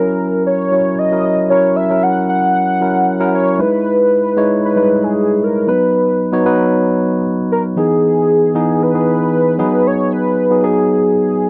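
A velvety, detuned synth lead and a clean tine electric piano begin together in this nostalgic, romantic pop excerpt, moving at 115 BPM in a straight 4/4. The lead carries the melody between G#4 and F#5, its sawtooth-and-triangle blend thickened by unison voices, chorus and vibrato, with a fast attack and sustained notes. Beneath it, the electric piano supplies direct, up-front accompaniment from E3 to C#5. The harmony opens on F#7, then at 3.6 seconds shifts into a second passage that moves through Emaj7, B, Emaj7 again and G#m7. Both parts sit close and forward in a dry, intimate 1970s-style studio sound touched by light reverb.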